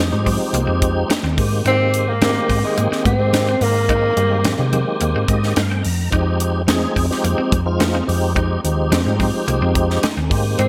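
A straight 4/4 groove from a tight funk drum kit, with its high-tuned snare and gated reverb, locks in with ringing congas in the background and a round, dark hollow-body fingered bass to anchor this nocturnal, funky electric jazz fusion excerpt, as a mellow tenor saxophone with vibrato and a soft attack carries the melody until 4.7 seconds, a full tonewheel organ on slow rotary speaker plays a fill from 5.0 to 6.1 seconds, and a twangy, chorused clean guitar adds stabs over Fm9 and Abmaj9 chords in a bright 1980s-style digital production with plate reverb.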